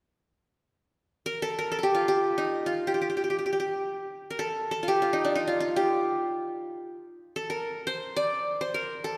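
Turkish music in free time, this short fragment cut from a longer piece carries a melancholic, longing mood. A solo qanun carries the melody from 1.3 seconds, moving within a range of D4 to D5. Its plectrum-plucked triple strings ring bright-edged and sit up front in the sound. The recording places the instrument in a church or concert hall, where a lush reverb with a 2.3-second decay lets each note bloom and linger. The result feels intimate yet spacious, a lone voice reaching through a resonant room.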